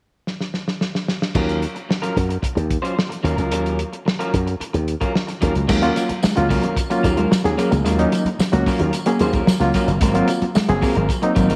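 Driving and sly, this funk excerpt moves at 111 BPM in a straight 4/4 and is cut from a longer piece. A muffled, lo-fi soul drum kit opens with a fill at 0.3 s, its dark cymbals, medium-tuned snare and tight kick sitting up front with a rolled-off top. At 1.3 s a growly, punchy slap bass with an envelope filter arrives on an Ebm9 chord, alongside a slightly broken-up, picked electric guitar that stays compressed in the accompaniment. When the harmony moves to Ab13 at 5.7 s, the texture fills out: a clean, scooped guitar riff with an envelope filter and spring reverb sits in the background, and a reedy electric piano adds lightly overdriven stabs with fast tremolo through its built-in speakers. A jingly tambourine joins at the same time, followed by very quiet congas with thick skins and hard hands. A moderate echo chamber and small room reverb give the mix a touch of space.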